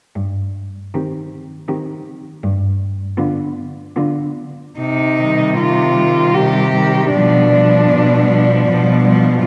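A rich, focused cello sings a yearning melody with vibrato from 0.9 s over a clear, close cello bass that begins at 0.2 s, while a bowed cello accompaniment and a background second line with expressive portamento and a soft attack fill in the middle of this melancholic, rubato classical fragment in C minor at 78 BPM in 3/4, heard from further back in a reverberant concert hall as the harmony moves between C minor and G7.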